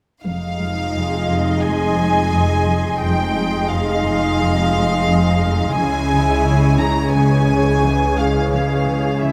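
Ominous and tense, this cinematic fragment is cut from a longer piece and moves at a straight, measured pulse in four. A close, up-front violin section carries the melody with a soft attack and a pure, floating sul tasto tone, while a lush viola section adds woody, vibrato-laden accompaniment beneath it. The low end gathers from 0.3 seconds: a dark double bass section and a cello section tucked into the background anchor the bass, and a distant, very quiet studio cello section plays a riff in the same register. From 0.9 seconds a breathy, wind-like tuned noise texture with its own built-in reverb settles in above the strings as sustained chords with a slow attack and long release. The harmony rests on Fm7 before darkening to Dbm at 5.8 seconds, all set within a moderate scoring-stage reverb.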